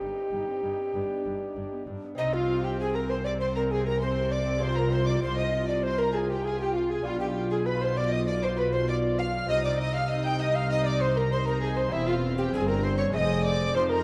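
A dark, reverberant concert-hall sound frames this stormy, driving baroque-style concerto excerpt, where an airy, chiffy alto recorder leads up front over a distant violin section singing with portamento, an intimate sul tasto second violin line, a lush viola section, a focused double bass section, a cello section in the background, and a delicate fingerpicked lute.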